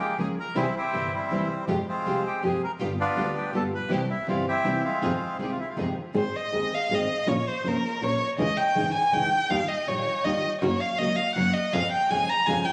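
A warm, expressive bowed violin with vibrato, portamento and slapback echo takes the solo from 6.2 s in this melancholic, dramatic tango in 3/4 with a rubato feel, after a reedy, close-miked bandoneon carries the opening melody until 5.8 s, over dark, woody thumb-plucked nylon-string guitar, a biting, earthy bowed double bass, and bright string-section stabs with slapback echo in the background, the room heard through huge ambient club reverb and compression on a phone recording of this excerpt.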